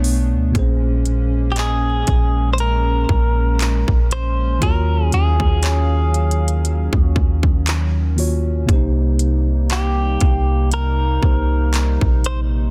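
Dry and densely limited, this moody, longing contemporary R&B excerpt moves at a slow 59 BPM in Bb minor with a light sixteenth-note swing. Up front, a trap kit with a hard-clipped kick, crisp hats and handclaps sits over a deep, boomy sine 808 bass, while a worn, slightly out-of-tune tine electric piano with light overdrive and a hollow, flute-like pad with chorus and sidechain pumping hold the harmony. From the start, a very quiet, pure FM synth bell adds gentle high texture, and at 1.5 seconds a clean, compressed, direct-recorded electric guitar takes the melody through digital delay.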